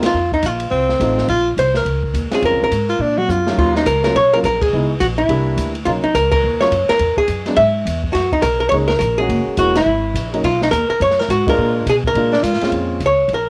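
A band accent opens this smoky, swinging small-group jazz clip cut from a longer piece, with a dark, clean, hollow-body archtop guitar carrying the melody up front over a woody upright piano, a thumpy gut-string upright bass played pizzicato, and an open drum kit with dark cymbals and a boomy kick in a small room. A breathy tenor saxophone with vibrato and scooped notes joins at 0.7 seconds for a short second line, and a drum fill leads into a new section at 3.6 seconds, where the chords grow richer under further band accents. The sax returns briefly at 12.3 seconds, and the home cassette recording lends the guitar, piano, drums and sax a tape-worn sound in moderate reverb.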